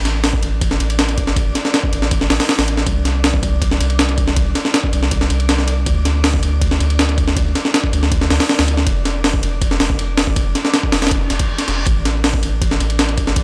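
Nostalgic and atmospheric, this drum and bass and jungle fragment in A minor runs at 160 BPM, led by an up-front, gritty, pitched-up sampler-style kit with a thumpy kick, medium-tuned snare, hi-hat and ride, overdriven and compressed with the air of a large room. A deep, round dub sub bass sustains underneath through chords of Asus4, Csus2 and Dm/F, while a breathy, wind-like tuned noise texture drifts in the background with its own reverb from 0.5 seconds. An electronic reverse cymbal sounds in the background at 11.2 seconds, just before the return to Asus4.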